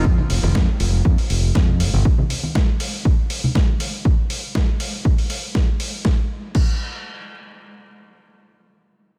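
A bright, up-front fingered electric bass with tube saturation, low-pass filtering and sidechain pumping opens this feel-good, joyful filtered disco house excerpt at 120 BPM alongside a punchy, tape-warm electronic kick, as a barely audible downlifter, background tambourine and congas, and a gritty, overdriven sampler-style soul kit of crash, hi-hat and snare join in; the bass stops at 2.0 s and the tambourine and congas at 4.0 s, while the kick and kit carry on to 6.7 s under light reverb and digital ambience.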